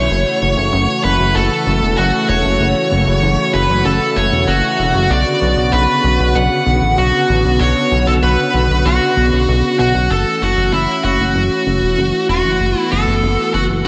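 A dreamy mix soaked in moderate plate reverb opens this moody, nostalgic synthwave excerpt, cut from a longer piece and moving at 96 BPM in 4/4 with a straight feel in F# minor. A bright, high-gain lead guitar carries the melody up front, its picked, distorted tone trailed by a diffuse ambient delay. Beneath it, a brassy analog pad holds sustained chords built from detuned sawtooth voices, with a soft attack, filter swell, moving notch, vibrato and chorus giving it a bold yet mellow character. The chorused synth bass sits up front too, a retro, glossy blend of pulse wave, sawtooth and ring modulation with pulse-width modulation, a fast-attack filter pluck and tube saturation. All three parts play throughout, with the harmony moving from F#m7 to Bmadd9 at 5.1 seconds and back to F#m7 as a new section begins at 10.1 seconds.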